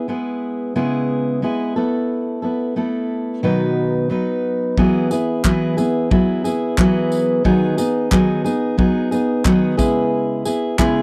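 A fingerpicked steel-string dreadnought guitar sits up front with a dark tone and audible finger squeaks, carrying this heartfelt, sunny acoustic pop excerpt in a straight 4/4 through chords like C#m7, Asus2 and Eadd9. At 4.8 seconds a modern studio drum kit joins with handclaps, tambourine and a punchy kick, its natural room sound sitting behind the guitar. The recording is dry and close, with a 1970s studio character and little reverb.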